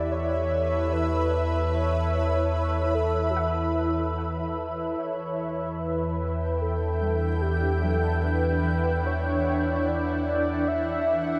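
A slow, straight 4/4 pulse at 74 BPM carries this serene, melancholic ambient piece in E dorian, cut from a longer work, as a shimmering, ethereal pad holds sustained chords over a deep, round sub bass, moving from Aadd9/E to Em7 at 5.0 s. Above them a velvety, smooth synth lead with chorus, delay and vibrato carries the melody, while a very quiet, soft pluck traces dark arpeggios until 10.9 s. A tense, string-like bowed drone fades in from 7.8 s in the background, and a huge, wet reverb with a long tail bathes the whole sound.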